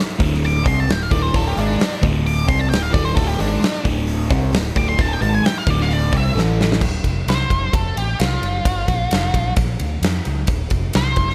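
An octave-fuzz lead guitar takes the spotlight: dark, distorted and picked, it carries a solo that enters at 0.5 seconds and spans a high range in this smoky, gritty cut of blues rock power trio and southern rock. Beneath it, a bright, crunchy overdriven guitar, double-tracked and up front, drives a picked riff over D5 and A5 power chords at 131 BPM in a straight 4/4, with a phaser coloring its tone. A round, foam-muted fingered electric bass adds a punchy, amped low end, while a huge arena drum kit with bright cymbals, a medium-tuned snare and a punchy kick sits forward in a hall sound. A drum fill at 6.4 seconds leads into a second section where the riff guitar drops out at 6.8 seconds, leaving the lead, bass and drums to move through Dm7 and Gm7 in D minor. Light reverb and studio ambience frame the trio, tuned slightly sharp to A4 = 445 Hz.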